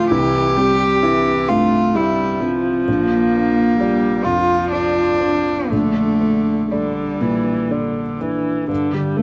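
A felt-muted upright piano, a bowed viola and a cello open together in this short excerpt of neoclassical piano and strings, moving in a rubato 3/4 at around 60-66 BPM with a longing, reflective mood. The intimate, mellow piano sits up front with audible action noise alongside a warm, airy sul tasto viola with vibrato, while the cello's pure, nasal second line floats until 8.2 s, and the piano and viola continue to 9.2 s. The harmony passes from C to Bb to Gmadd9/Bb before arriving on G5, framed by a light reverb.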